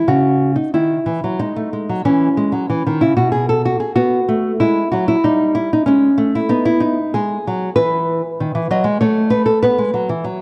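A lilting triple metre at around 94 BPM sets the pace, though the pulse bends freely with a rubato feel, giving this baroque-style classical dance a supple, breathing quality. A solo nylon-string guitar carries the whole performance, fingerpicked with an intimate, up-front presence and a small, dark acoustic voice that ranges from B2 up to D#5. The harmony sits in C# minor, moving between C# minor and G# minor with sparse open-fifth sonorities and brief unharmonized moments before arriving on B near the close at 9.6 seconds. Despite the minor key, the mood comes across as radiant and dance-like, buoyed by the graceful sway of the three-beat rhythm. A moderate concert hall reverb surrounds the guitar with a soft halo of space, and the overall production leans toward a mellow, shadowed tone in this roughly ten-second passage cut from a longer piece.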